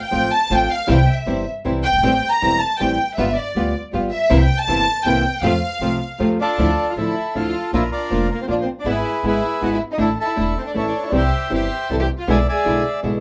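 A violin section, soft in attack and pure in tone, floats up front through this sultry, melancholic tango in 3/4, taking a solo over the opening F major passage at 158 BPM with a rubato feel. Beneath it, a flamenco guitar is fingerpicked with audible finger squeak, and an upright bass gives dark, thumpy gut-string pizzicato at the bottom. A clear, biting string section sits in the background with intense stabs and light vibrato. At 6.4 s a reedy bandoneon enters up front with the melody, and from 6.6 s the music turns to D minor, passing through chords such as Dmadd9, E/G# and Asus4 before closing on E7/B. The band plays live together in one small room with a moderate, short reverb, and the recording is a fragment cut from a longer piece.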